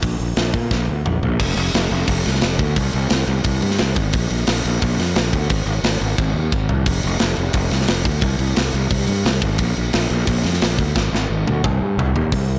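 A driving, straight 4/4 pulse at 176 BPM opens this dark, aggressive heavy metal excerpt in C minor, cut from a longer piece and tuned to A4 = 445 Hz, with a tight metal drum kit of kick, snare, toms, hi-hat and crash sounding acoustic and mid-forward, its bright cymbals, medium-tuned snare and soft-clipped kick set up front, and fills breaking in at 0.7, 6.2 and 11.0 seconds. Alongside it, equally up front, a fuzz fingered electric bass growls between F1 and Bb2, punchy and direct through overdrive and transformer saturation. The dry, blown-out recording carries a raw, overdriven edge throughout.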